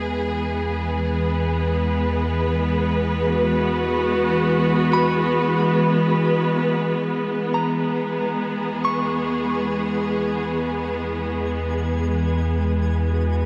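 Ambient excerpt in free time and E major, weightless and peaceful, where a clear, lush bowed string section holds sustained chords up front over a deep, ominous rumbling drone that fades out through its first 7.1 seconds, while a clean picked electric guitar adds quiet arpeggios through diffuse delay from 4.9 seconds and a twinkling, sparkling granular texture with octave-up shimmer glows softly in the background from 8.0 seconds, all set in a vast, echoing space.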